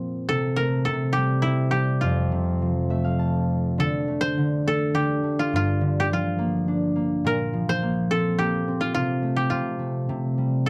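This children's lullaby in F major drifts along at 105 BPM in a rubato 3/4, sleepy and tender, in a fragment taken from a longer piece. A woody, dry koto, played with fingerpicks, carries the melody in a narrow middle range, while a ringing, fingerpicked concert harp spans low to high and sits a little louder. The harp adds a fill from 2.6 to 3.8 s before a new section begins, with chords moving through Am/C, F, Gm7 and Bbsus2 in a close, intimate 1970s-style studio sound with little reverb.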